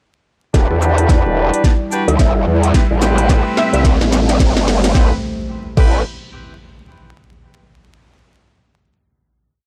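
Gritty and funky, this short glitch hop piece rides a swung beat that builds from 0.5 seconds, with a knocking, up-front electronic kick, a cracking snare, metallic hats, rim, shaker and crash, all tape-warm and re-recorded in a small room, beneath a growling, saturated bass that wobbles at changing speeds through chorus. Jazz-style horns play syncopated, rootless chord stabs under a filter sweep, a dark, moody analog pad holds sustained chords with vintage sampler grit, and a tearing, edgy sync lead in the background adds short phrases with vibrato from 1.4 to 3.8 seconds. A background riser climbs from 1.9 seconds into a final chord at 4.9 seconds, and the whole piece sounds dry and gritty with vinyl crackle.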